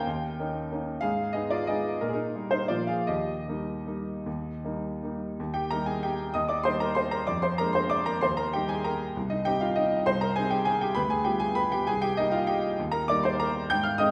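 A woody, slightly detuned upright piano carries this entire classical waltz on its own, sitting up front with a smooth, vintage character. The piece moves in three with a loose, rubato feel, giving the line a bittersweet, nostalgic mood as it reaches from deep bass notes to high ones. The opening passage runs to about 5.4 seconds, leaning on darker, shaded harmonies before settling onto the home chord. A second passage then takes over until 14.1 seconds, passing through a minor turn before returning home. The recital hall's reverb wraps the piano in a wet, lingering bloom, and this brief excerpt is clearly drawn from a longer piece.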